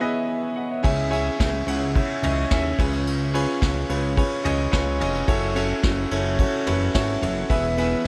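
Piano-driven pop in C# minor at 108 BPM, this dramatic, earnest excerpt opens on a warm concert grand piano alone, intimate and up front with audible action noise, deep bass, long sustain and a subtle chorus, before a fat, saturated analog bass with a detuned sawtooth tone and filter sweep joins at 0.8 seconds alongside a vintage brush drum kit. The brushed kit sounds distant and roomy, with a punchy kick, medium-tuned snare, ride cymbal, toms and a rolled-off top, while the chords move from E through C#m, C#7 and F#m7 back to E. A huge ambient reverb soaks the whole mix in a dreamy haze.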